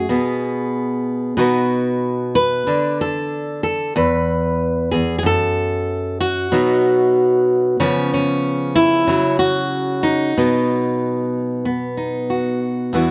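This folk recording is a short excerpt of solo fingerstyle acoustic guitar, gentle and pastoral in mood, moving at 94 BPM in a straight 4/4. A single fingerpicked steel-string acoustic guitar carries the whole piece from 0.0 to 13.1 seconds, ranging from E2 up to B4. Its jumbo body gives a full-bodied tone, and it sits up front in the mix with a light reverb around it. Audible finger squeak adds an intimate, human touch to the playing. The harmony settles on B, with C#7 at 7.8 seconds and F#5/C# at 9.1 seconds before it returns to B.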